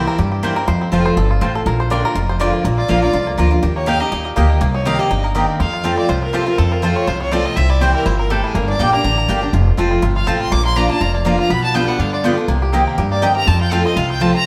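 A twangy, fingerpicked banjo with tape echo opens this joyful, rustic, swung bluegrass excerpt over a bright, up-front picked acoustic guitar, mellow mandolin stabs in the background and a thumpy, woody upright bass, before a clear, smoothly bowed fiddle with light vibrato enters at 2.8 seconds to take the lead, the whole band ringing together in a live stone room.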